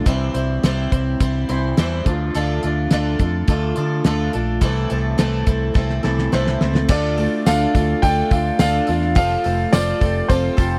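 A damped, dark 1970s drum kit with a fat snare and tight kick sits up front in this reflective, wistful folk rock and heartland rock excerpt. It plays alongside a round, amped fingered bass, a bright, shimmering, octave-doubled twelve-string acoustic guitar, and a lo-fi, slightly broken-up electric guitar riff colored by phaser. After a drum fill at 5.8 seconds, a baby grand piano carries a long-sustained melody from 6.3 seconds, over a woody, very quiet upright piano and a jingly tambourine set far back in a large room, all within a dry, close 1970s-style studio sound.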